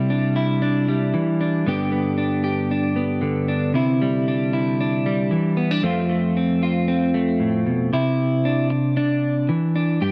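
A clean, picked electric guitar plays alone throughout this short highlife passage, sitting up front with a dark, compressed tone and a lush chorus. At 115 BPM in a straight 4/4, it moves through Cadd9, G and F in C major, giving a carefree, danceable feel. Light reverb frames the sound, and the clip is cut from a longer piece.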